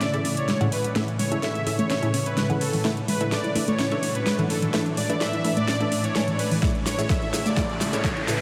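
A soft, full-bodied supersaw carries the melody up front in this uplifting, euphoric progressive house build-up at 127 BPM in A major, pumping with the sidechain and trailing a diffuse ambient delay over a shimmering, ethereal pad, a dark, round pluck playing arpeggios through chorus and tape echo, and lush, bright unison pluck stabs sitting in the background. A deep house kit with a fat snare and metallic hats runs a drum fill throughout while a filter sweeps the pluck, a punchy overdriven kick enters at 6.6 s, and an electronic riser comes in at 7.3 s. The chords move from Amaj7 to E7sus4/A and back, all soaked in a huge, dreamy reverb.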